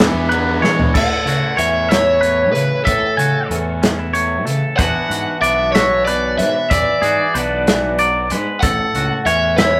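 A lilting 6/8 pulse at 62 dotted-quarter beats per minute drives this short, wistful yet bright cut of math rock and midwest emo in A major, taken from a longer piece. A loose indie drum kit sits up front with a tight kick, medium-tuned snare, dark cymbals and a pumping small-room sound, working through crash, hi-hat, ride and toms, with a fill at 0.6 seconds. A double-tracked, overdriven stack guitar punches out a brief riff that stops at 0.9 seconds. Two clean, picked, twangy electric guitars run throughout: a warm, compressed one accompanies in the low and middle register while a brighter one spins arpeggios higher up, and a round, punchy fuzz bass anchors the bottom. From 1.0 seconds a raw, overdriven garage guitar carries the melody, dressed in spring reverb and slapback echo. The harmony drifts between E9, A69 and A6 in a rough rehearsal-room recording with a moderate sense of space.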